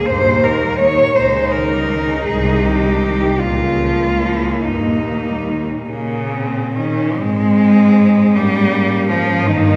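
Moving in a rubato 6/8 at about 44-55 BPM, counted in dotted quarters, this serene classical passage for cello ensemble in Ab major is cut from a longer piece. A rich, smooth cello carries the melody up front with vibrato, a focused second cello plays a bowed line in the background, a clear cello shapes the accompaniment, and a close bass cello anchors the low end from 0.1 seconds. The bowed voices bloom in a recital hall, heard from further back in the room, with a new section arriving at 7.2 seconds as the harmony moves to Ab.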